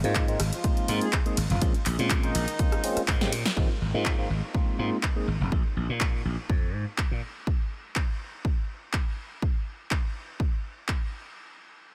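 This feel-good, joyful slice of filtered disco house opens with tine electric piano, slap bass and a punchy analog drum machine together, in Ab major at 123 BPM with a light swing on the 16ths. The clean, direct electric piano carries the chords through a phaser, a low-pass filter and sidechain pumping, moving between Ab69 and Bbm9. The growly, bright slap bass sits up front under the same filter and pumping. The drum machine's overdriven handclaps, hi-hat, ride cymbal, rim click and snare have a short room on the snare, clap and hats, and they are joined almost at once by a layered, tape-warm electronic kick. A mellow, distant horn section in octave doubling, with light vibrato, drifts in the background with 12-bit sampler grit, filtering and analog delay. A drum fill leads into the second section at 3.6 seconds, the electric piano stops at 5.3 seconds and the bass at 7.2 seconds, leaving the drums to run on in a light digital ambience.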